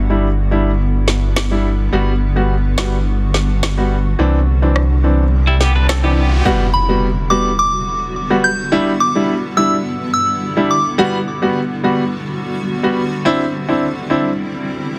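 Dancehall at 106 BPM in G major with a sunny, summery mood, this section cut from a longer piece sets a clear, intimate grand piano with audible action noise over a cloudy, evolving granular pad, a deep, up-front sine sub bass and electronic downlifter and riser effects building to an impact at 6.5 seconds, joined by a woody electronic snare and rim click, a bright, clean electric guitar arpeggio with tremolo from 5.5 seconds, and a soft, pure FM bell melody with chorus and delay from 6.7 seconds, in a dense, heavily limited modern master.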